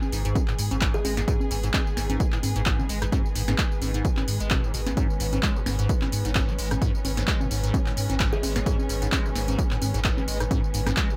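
Hypnotic, gritty acid house at 130 BPM in G# minor, where a punchy electronic kick and a booming analog drum machine of congas, handclaps, metallic hats, rim click, tonal snare and tambourine sit up front over a round sine sub bass with tube saturation and sidechain pumping, while a squelchy, resonant acid bass riff with filter sweeps, phaser, lush chorus and cassette tape color snakes through the mix, rich bowed strings hold sustained chords with sidechain pumping, a dark, warbling lo-fi tape-like pad with chorus, built-in reverb and sidechain pumping lingers in the background, and a woody kalimba with digital delay plucks brief notes at 0.9 and 8.3 seconds.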